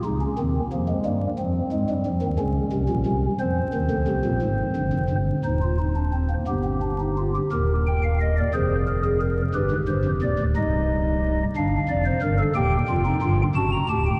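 Classical baroque-style three-part fugue for solo pipe organ on a stopped flute stop, contemplative and serious, moving at 59 BPM in a straight 6/8 and settling into C minor from 3.4 s, its soft, hollow tone with chiff and tremulant sitting up front in a wet cathedral reverb, dark production and vinyl crackle, with harmonies passing through Fm, Bbm, Ebmaj9 and G7 before this cut from a longer piece halts on D at 13.6 s.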